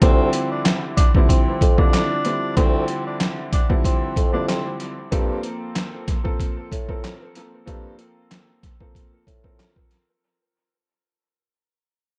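An echo-heavy, gritty mix opens this reflective boom-bap hip-hop excerpt at 94 BPM in D minor, built on an up-front, sampler-style drum kit of thumpy kick, medium-tuned snare, hi-hat and handclaps, compressed and pitched down with 12-bit grit and a tape-warm, small-room character. A clear, woody upright piano, worn and slightly detuned with long sustain and a cassette-tape tint, moves from Dm11 to a rootless Gm11 at 5.1 seconds over a distant, roomy bassoon bass line with light vibrato and a soft attack. A subtoned tenor saxophone with scooped notes sings a short jazz melody that stops at 4.8 seconds, and dub echo trails both it and the piano as the whole passage fades out.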